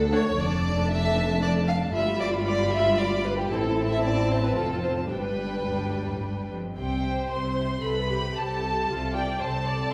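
A wet, reverberant hall sound wraps this spirited, graceful excerpt from a quick classical-period movement for string orchestra in 3/4, played with a rubato feel. High above, a violin section carries the melody with light vibrato, a soft attack and an intimate, smooth top. Beneath it, a focused, up-front second violin line and an even, rich viola accompaniment fill the middle, while a bowed cello section and an expressive double bass section with portamento share the bass, and at 6.8 s the music moves into a new section on a C5 chord.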